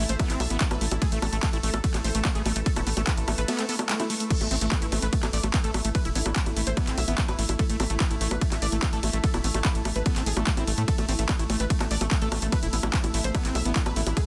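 Intense and psychedelic, this psychedelic trance excerpt is driven by an overdriven, up-front electronic kick and a layered techno kit of bongos, handclaps, hi-hat, ride and crash, with a tight, punchy sequencer bass underneath, a squelchy, distorted acid bass riff and a thick, detuned unison lead with phaser, delay and sidechain pumping sitting in the background, a swarming granular drone and a warbly lo-fi tape-like pad hovering very quietly, a faint electronic swell at 3.7 seconds and a barely audible formant-sweep wobble bass surfacing at 4.9 seconds and again at 11.5 seconds, in a dense, heavily limited master with little reverb.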